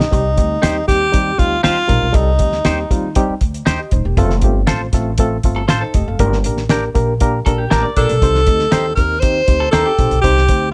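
A lightly reverberant recording with a faint mains hum carries this urgent, driving excerpt of uptempo 1960s-style soul at 119 BPM in C dorian: a dry, cloth-damped drum kit with fat snare and tight kick sits up front beside woody pizzicato upright bass and a barky, reedy electric piano with overdrive and fast tremolo, while a bright, twangy clean electric guitar adds stabs, a hollow-body semi-hollow guitar plays a scooped riff from 5.6 s, a breathy subtone tenor saxophone carries the intimate melody in two phrases, and a very quiet, dark saxophone section adds a brief second line at 7.7 s during a band accent.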